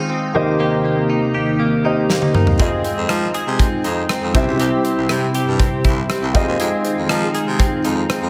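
A raspy, gritty baritone saxophone carries the bass line from 2.6 seconds in this dramatic, nostalgic 1980s-style pop excerpt, over a deep, open concert grand piano, a vintage organ-like string ensemble with phaser and chorus, and a bright, twangy clean electric guitar riff with analog chorus and diffuse delay, while a tight, up-front acoustic drum kit enters with a fill at 2.1 seconds, all set in a dreamy mix soaked in plate reverb.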